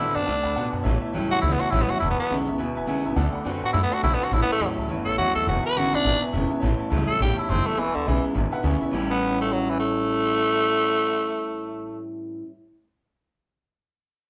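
A raspy, gritty tenor saxophone leads up front with vibrato over a rowdy, upbeat rockabilly swing, backed by a twangy, slightly broken-up electric guitar riff, thumpy gut-string upright bass, a full-bodied picked steel-string acoustic guitar and a clear upright piano, all played live together in one room with moderate large studio reverb in this short cut from a longer piece.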